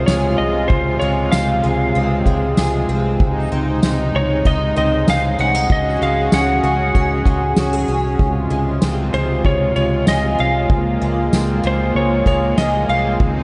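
An up-front analog pad of detuned sawtooth chords, bright and smooth with chorus and tremolo, carries this dreamy, ethereal dream pop excerpt at 96 BPM in Db major, moving from Dbmaj7 through Ab/Db and Gbsus2/Db back to Dbmaj7. Over it, an electric slide guitar played with fingerpicks sings a compressed, slightly broken-up melody through analog delay, while a woody, boxy twelve-string acoustic guitar with old strings picks shimmering, octave-doubled arpeggios through ensemble chorus and delay. A round, foam-muted vintage electric bass anchors the low end, and a dark soft-mallet drum kit of kick, snare, ride cymbal and tambourine sits in the background of a mix soaked in cathedral reverb.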